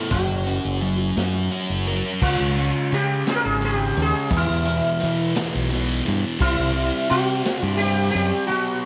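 A slow, straight 6/8 pulse at 57 BPM drives this trippy, kaleidoscopic psychedelic rock excerpt, where a thick, double-tracked fuzz guitar riff with distortion and phaser sits up front beside a buzzing, shimmering sitar melody with slapback echo and a growling, overdriven fingered electric bass, while a vintage drum kit with dark cymbals, a punchy kick and a rolled-off top plays until 8.3 seconds in a lightly reverberant studio room as the chords move from F# through C# and E5 to C.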